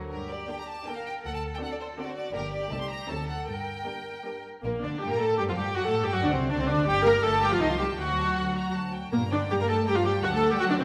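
A quick classical-period string orchestra movement in G minor at 161 BPM in 3/4, this restless, stormy fragment from a longer piece sets a lush, focused violin melody over a second violin line shaded with expressive portamento, while an up-front, smooth viola accompaniment, even-toned bowed cellos and double basses with a rich, vibrato-laden bottom sit in the reverb of a scoring stage as the harmony pivots between G minor and D7 before a new section begins at 4.6 seconds.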